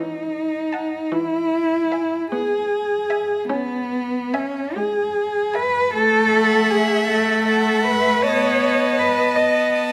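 Lyrical and tender, this slow romantic movement for string quartet unfolds in 6/8 with a free, rubato feel, cut from a longer piece. The viola and cello begin together at 0.0 seconds, the viola supplying a smooth, even accompaniment with a warm, softly rounded top, while the dark, up-front cello carries the bass with expressive portamento and vibrato. Both violins enter at 0.7 seconds: the first sings the melody in a high register with a rich, smooth tone, and the second weaves a close, expressive second line just beneath it, its soft attacks and gliding portamento lending intimacy. Vibrato colors every voice, and each part is played by a single bowed instrument, giving the texture a chamber-like closeness. The harmony drifts through dominant-tinged and minor seventh chords before settling back toward a dominant, all set in a moderate recital hall reverb that adds a gentle bloom around the ensemble.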